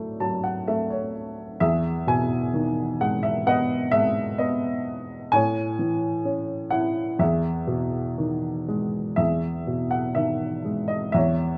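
A dark, woody upright piano opens with a short fill over a Dadd9 chord before settling into Emaj7 at 1.6 seconds, setting a calm, lyrical classical mood in E major at a slow 58-65 BPM with a free, rubato feel. The solo piano moves through Amaj7 and back to Emaj7, its mellow tone and short sustain heard up front through close, detailed microphones. A moderate recital-hall reverb surrounds the playing in this brief passage cut from a longer piece, which shifts into a new section at 9.2 seconds.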